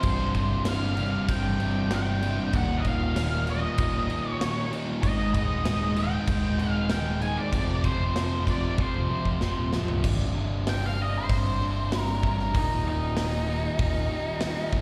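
Quiet-loud alternative rock with a dark, brooding mood, this cut from a longer piece layers a dusky octave-fuzz lead guitar melody over bright, compressed distorted electric guitar riffs and a thick fuzz guitar riff (each guitar carrying slapback echo), all anchored by a growly, punchy picked electric bass and a big acoustic rock kit with a punchy kick and bright cymbals, until a drum fill at 8.8 seconds leads into a lead guitar solo at 10.0 seconds as the thick fuzz guitar drops out, the whole heard as a live gig through the venue's PA with recital-hall reverb.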